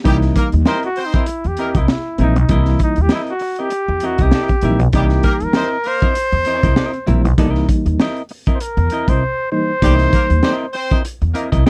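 A mellow trumpet sits up front in this playful, gritty funk excerpt, entering at 0.7 seconds with a jazz-style solo full of scooped notes, light vibrato and a smooth top, pausing for a brief silent gap from 9.2 to 9.8 seconds. Beneath it, a crunchy breakbeat kit of hi-hat, punchy kick and high-tuned snare drives the groove with a saturated, dark tone and a rolled-off top. A growly, woody upright bass is plucked close and thumpy, sharing the front of the mix with the drums. A reedy electric piano with fast tremolo adds stabs, while a clean hollow-body electric guitar, played with the fingers, fills in the accompaniment. A clear horn section with vibrato plays a loose second line that sounds distant and roomy, over a C7#9 chord, all captured as a dry, close 1970s-style studio recording with a swung sixteenth-note feel.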